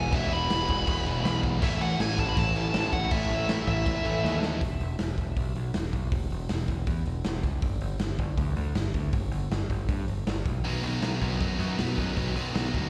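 A growling, punchy picked electric bass sits up front throughout this upbeat, energetic punk rock passage cut from a longer piece, its overdriven tone coming through both direct and amped. Beside it, a raw garage drum kit, also up front, pounds out a straight 4/4 with a boomy kick, a medium-tuned snare, hi-hat and crash, sounding saturated and gritty with a rolled-off top in a bright stone room. In the opening stretch, a dark, smooth lead guitar carries the melody through overdrive, slapback echo and tape echo, over a stack of riffing guitars: a very quiet, double-tracked crunchy guitar, a bright distorted electric guitar, and a hollow-body semi-hollow guitar with slapback echo sitting in the background. A drum fill at 4.2 seconds leads into a second section at 4.6 seconds, where the guitars drop away and bass and drums drive on alone until the distorted and semi-hollow guitars return at 10.6 seconds. 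The whole performance has the feel of a live gig heard through the venue's PA, with small-room ambience and recital hall reverb around it.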